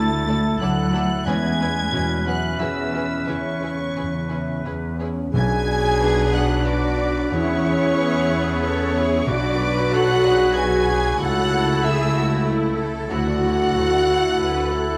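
A rich, vibrato-laden violin section carries the high melody of this sorrowful, longing cinematic excerpt in 3/4 at a rubato 92 BPM in B dorian, supported by a second bowed violin section, a clear oboe, a pure flute ensemble and a clarinet on second lines, along with mellow French horn chords, a deep-bassed grand piano, fingerpicked ringing harp arpeggios, lush violas entering at 0.3 s, focused cellos and double basses on the bass, and very quiet timpani from 5.3 to 10.2 s, set in a moderate scoring-stage reverb with close, detailed microphones.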